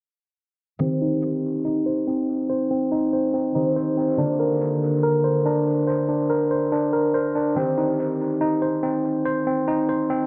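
A half-time 4/4 groove at 142 BPM anchors this dark, ominous hip hop excerpt in C minor, moving from Cm to Bbadd9 and back. A worn, slightly out-of-tune tine electric piano plays up-front arpeggios through a combo amp, while a thumb-plucked concert harp rings beneath it in accompaniment, both low-pass filtered and soaked in dub echo under a filter sweep. The harp steps forward with a brief fill from 6.9 to 7.6 seconds, framed by a moderate spring reverb and small-room ambience in an echo-heavy mix.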